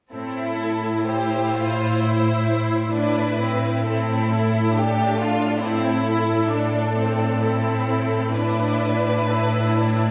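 A slow, solemn string passage in A minor opens at once, all four sections entering together at 66 BPM in a rubato 3/4: a lush, focused violin melody sits above a smooth, distant second violin line and an intense viola accompaniment. Underneath, a clear, up-front cello section holds the bass on A, and the yearning harmony rests on A minor before shifting to E over A at 8.3 seconds. The bowed ensemble carries vibrato throughout, set in the reverberant bloom of a recital hall in this short passage cut from a longer romantic movement.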